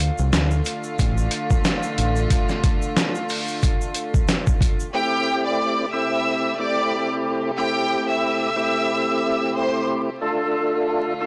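Dark and moody, this boom-bap hip-hop excerpt moves at 91 BPM with a swung 4/4 feel, opening on a Dm break where gritty, pitched-down sampler drums with a thumpy kick, a round, dark fingered electric bass and a grainy egg shaker sit under a soft bed of reedy, gut-toned strings holding sustained chords, the bass dropping away after a little over two seconds. At 4.9 seconds the drums and shaker give way as the harmony shifts to Am7, and a bright, lush violin section carries the melody while a fat, lightly overdriven tonewheel organ with key click, chorus vibrato and slow rotary speaker fills in the accompaniment before the music settles back on Dm. The whole recording is blown-out and overdriven, with vinyl crackle and a light small-room reverb.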